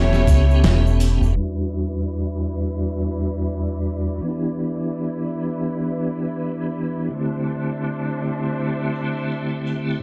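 A lightly overdriven tonewheel organ sits up front in this smoky, cinematic trip hop fragment, its piping, scooped tone colored by chorus vibrato, key click, a slow rotary speaker, tremolo and a 12-bit sampler grit. At the very start, a mellow baroque flute with an airy, wooden vibrato drifts in the background through tape echo, while a woody, growly pizzicato upright bass and a compressed, pitched-down sampler drum kit with a thumpy kick and medium-tuned snare mark a brief swung groove before falling away by about 1.3 seconds. Underneath, a clear, focused studio violin section holds bowed, vibrato-rich chords, and from 1.4 seconds a filter sweep reshapes its sound. A tube shaker and group handclap linger distantly in a large room from 0.1 seconds onward. The harmony moves from A7 to Em7 and settles on D9sus4 at 7.1 seconds, with the dark, warm, low-passed production and small room ambience lending a smoky warmth to this excerpt from a longer piece.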